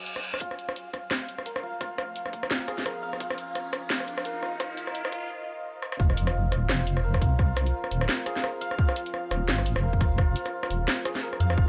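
Half-time drum and bass in F minor at 172 BPM with a swung, spacious and cinematic mood, this excerpt opens on a reverse cymbal and a faint pulsing gated texture over a deep, moody ambient pad with chorus and 12-bit sampler grit, pumping behind a bright, shimmering santur arpeggio run through a low-pass filter and dub echo. A hard-clipped electronic kick and an up-front kit of cracking snare, bright hats, rim click and shaker drive a build-up with a riser and a filter sweep on the pad, pausing for a brief break and a drum fill at 5.8 seconds. The drop lands at 6.0 seconds with an impact and a deep, saturated wobble bass of detuned sawtooth and sine.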